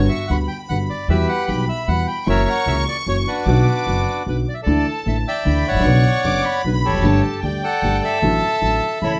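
A reedy, bright bandoneon carries the melody up front, with plate reverb, in this sultry, tense tango fragment at 151 BPM in a rubato 3/4, moving from B minor to D major at 4.7 s, while a bowed studio violin section adds a high second line with gut-string tone and light vibrato, a dark, worn, slightly detuned upright piano with audible action noise supplies the accompaniment, and a growly pizzicato upright bass with steel strings anchors the low end, all captured with close, detailed microphones and light reverb.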